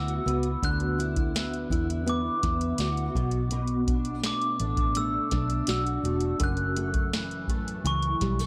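Hazy and dreamy, this short indie and bedroom pop fragment drifts in a straight 4/4 over a D69 to Bm7 to F#m7 progression. A fingerpicked steel-string acoustic guitar sits up front, warm and auditorium-like with audible finger squeak, its tone thickened by ensemble chorus and a warbly pitch drift. Above it, a glockenspiel struck with brass mallets carries the high melody, ringing in a dark, smooth, bell-like voice softened by analog chorus and tape echo. A vintage muted fingered electric bass supplies a round, foam-muted, amped low end. A soft vintage rhythm box joins at 0.1 s with a deep kick, crisp snare and metallic hats, placed up front, while digital ambience wraps the mix in a gentle haze.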